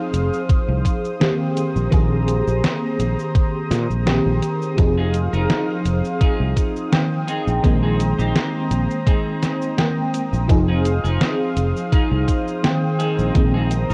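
A dreamy FM electric piano with tremolo, chorus and tape echo opens this melancholic, woozy vaporwave excerpt in F minor at 84 BPM, over a thick, bright unison pad carrying vintage sampler grit, as the chords alternate between Fm7 and Bb9sus4. A fretless electric bass, a thumpy electronic kick and a detuned 8-bit drum machine with cabasa, hi-hat and snare settle into a lightly swung groove, and a clean, picked electric guitar riff with analog chorus and tape echo joins at 4.8 seconds. The whole mix sits in light reverb with a worn, warbling old-tape pitch drift.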